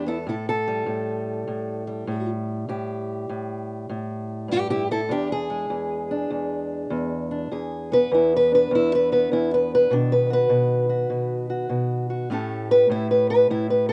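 Recorded dry in the open air with a dark, rolled-off top end, this short cut from a longer piece puts a lone fingerpicked acoustic archtop guitar up front, its boxy body tone and finger squeaks clearly audible. It's laid-back, rollicking acoustic country blues at 100 BPM in 4/4 with a swung eighth-note feel, tuned slightly flat of concert pitch. The guitar ranges from E2 to B4 over a progression moving from A5 to E7, then B, and settling on A7 at 12.3 seconds.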